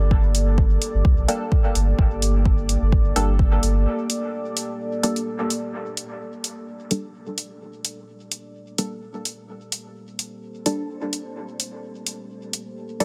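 An up-front, tape-tinged electronic kick anchors this cavernous, meditative dub techno excerpt in G minor at 128 BPM with a light 16th-note swing, alongside a clean, sidechain-pumped pure sine sub bass, metallic hi-hats that carry on after the kick stops at 3.5 s and the bass at 3.9 s, a muted, detuned sawtooth chord stab with chorus, phaser and dub echo that enters at 1.3 s, and a deep, moody ambient pad holding a Gmadd9 chord through its own chorus and reverb.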